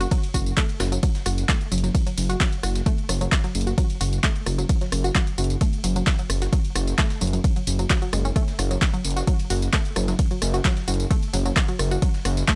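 A dry, gritty hardware sound with transformer saturation frames this intense, dark peak-time techno cut in F# minor at 131 BPM, where an overdriven, up-front electronic kick drives alongside a deep, rumbling detuned saw bass on F#1, a lush detuned unison pluck riff spanning F#3 to F#4 with sidechain pumping and analog delay, an overdriven analog drum machine of handclaps, hi-hat, ride cymbal, rim click and tambourine, and a very quiet, compressed breakbeat sampler-style kit adding hi-hat and snare.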